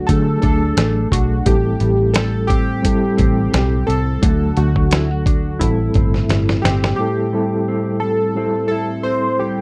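A gently swung 4/4 groove at 87 BPM sets a lonely, wistful bedroom-pop mood in A dorian, with the harmony rocking between D and Am7 across this short cut from a longer indie pop piece. A dusty, sampler-style soul drum kit sits up front with a thumpy kick, a medium-tuned snare and hi-hat, compressed and gritty, while a vintage muted picked bass underneath is dark, round and foam-muted, both louder than the other parts. Over them, a mellow, fingered electric guitar with subtle chorus and vibrato and a reedy electric piano with fast tremolo through its built-in speakers fill in the accompaniment. The melody comes from analog keys with a detuned sawtooth tone, a filter sweep, fast-attack decaying notes, phaser, subtle chorus and slapback echo. A drum fill runs from 6.3 to 7.0 seconds, and as it ends the bass and drums drop out, leaving the keys, guitar and electric piano to carry on alone until 9.6 seconds. 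The sound is dry and close, like a 1970s studio recording with little reverb.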